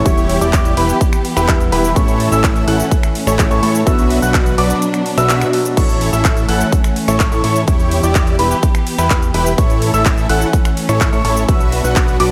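A warm concert grand piano, a soft-edged string section and a fat, saturated analog bass open this triumphant, uplifting festival progressive house drop at 126 BPM in A mixolydian, with a clear, intimate grand piano spinning high arpeggios and a huge detuned supersaw riff arriving at 0.1 s over punchy, overdriven kick and big-room percussion of claps, snaps, cabasa, hi-hats and cymbals. Sidechain pumping breathes through the pianos, strings, bass and supersaw as the chords cycle through Em, A and Bm, while the background piano drops away at 5.8 s and the kick briefly falls out just before. The whole mix is soaked in a lush hall reverb, giving this excerpt a dreamy, soaring sheen.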